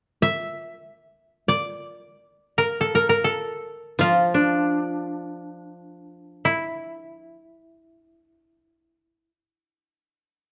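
In free time, this calm, austere fragment of Japanese chamber music opens at 0.2 seconds with a single koto carrying the melody between E4 and E5, its fingerpicked tone dry, woody and placed up front. A second, lower koto joins at 4.0 seconds with an accompaniment and drops away at 7.4 seconds. Close, detailed microphones and a light reverb capture the instruments.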